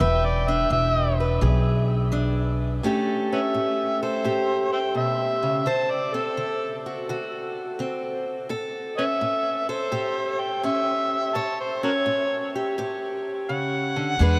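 A gritty, overdriven harmonica solo opens this swaggering acoustic country blues excerpt at a swung 85 BPM in A mixolydian, its amplified tone full of tongue slaps, scooped notes and light vibrato over a bright, boxy fingerpicked parlour guitar with audible finger squeak and a thumpy, woody pizzicato upright bass. The bass drops out at 2.8 seconds as the chords move from E7 to A7 and D7, returning only briefly at 14.2 seconds. The guitar and jazz-inflected harmonica carry on up front, all bathed in a huge, echoing reverb that suggests a vast space.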